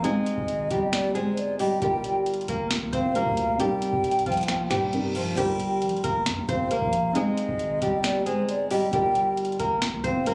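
Hip hop in a trap vein, this menacing, brooding cut from a longer piece moves at 135 BPM in a half-time feel, set in G phrygian with tuning at A4 = 435 Hz. An up-front, fingerpicked flamenco guitar carries the melody from F3 to C5, treated with digital delay, while an airy, hollow concert flute with vibrato and a soft attack plays a second line above it, also through digital delay. Beneath them, a felt-muted upright piano sits softly in the background as accompaniment, and a long, sine-toned 808-style bass with a fast attack decays deeply between G1 and G2. A booming analog drum machine supplies a dry, deep kick, crisp snare, metallic hi-hats, finger snaps and crash cymbal. The harmony cycles through Abmaj7, Gm7 and Cm7, and an electronic reverse cymbal rises in from 4.7 to 5.4 seconds to mark the move into the second section. The sound is intimate yet clubby, captured on a phone in the room with light, small-room reverb.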